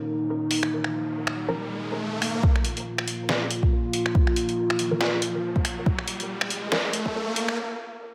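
Set in a moderate echo chamber, this brooding, meditative deep dubstep excerpt in Bb minor runs at 140 BPM with a swung, half-time feel, opening on a dark, nasal analog pad with lush chorus over a Bbm chord. A muted, detuned sawtooth dub chord stab sits in the background through phaser and dub echo, while an electronic riser enters at 0.4 s and a sampler-style trip hop kit of finger snaps, hi-hat and a pitched-down, muffled snare comes in up front at 0.5 s. At 2.4 s an overdriven, layered electronic kick drum joins as a filter sweep drives the build-up toward a brief break at 7.6 s.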